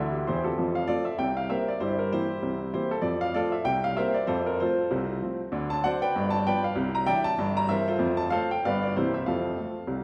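Heard from further back in a wet, reverberant scoring stage, this exuberant, playful stride-piano jazz fragment features a woody, natural-sounding upright piano playing alone with a swung feel, reaching from deep bass notes up into its upper register. A brief piano fill opens it before the main section arrives at 0.6 seconds, moving through familiar changes with D7 and G7 leading toward a closing run of G7, C7 and F.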